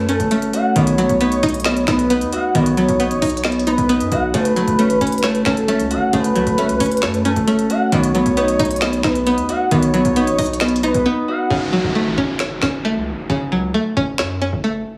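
Hip hop trap with a menacing, hard-hitting half-time feel, cut from a longer piece, where a fingerpicked, ringing harp and a twangy, bright string-like resonator pluck play over a saturated, distorted 808-style bass and a tape-warm trap kit of finger snaps, crisp hats and woody snare, while a smooth, detuned portamento lead glides with vibrato until 11.5 seconds, when a downlifter sweeps in over a brief break through the heavily compressed, radio-like mix.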